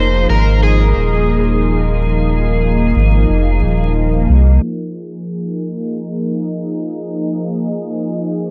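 Hazy vinyl crackle, a low-pass filter and light digital ambience wrap this deep ambient dub fragment in F minor at 90 BPM, with a gentle 16th-note swing. A round sine sub bass sits up front beneath a smooth, detuned sawtooth pad that holds Fm7 with chorus and 12-bit sampler grit, while a dark, overdriven slide guitar, played with fingerpicks, sings a brief dub-echoed melody until 3.9 seconds. The bass drops out at 4.6 seconds, leaving the pad alone under a filter sweep until the cut at 8.5 seconds.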